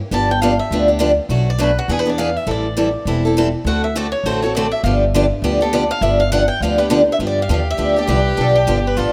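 A bright, boxy swing-style acoustic guitar picks a playful melody over an up-front parlour steel-string guitar and a woody, thumpy pizzicato upright bass in this brisk 203 BPM jazz manouche excerpt in G mixolydian, moving through G7, Bm7, E7, Am7 and D7 with a swinging feel, before an expressive bowed violin with vibrato and portamento joins at 7.2 seconds, all set in a lush hall reverb with a rough home-demo character.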